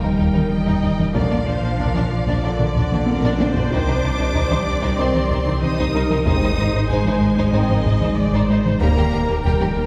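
A relentless taiko ensemble struck with hard sticks drives this brooding hybrid orchestral and electronic film cue in C minor at 94 BPM, with a fill at 3.1 seconds, as lush bowed violins, violas, cellos and very quiet double basses carry a vibrato-rich melody and supporting lines over mellow French horn chords, a warbling lo-fi tape-like pad with chorus, a round analog bass riff and a clean sine sub bass, all set back in a wet scoring-stage reverb with a faint mains hum.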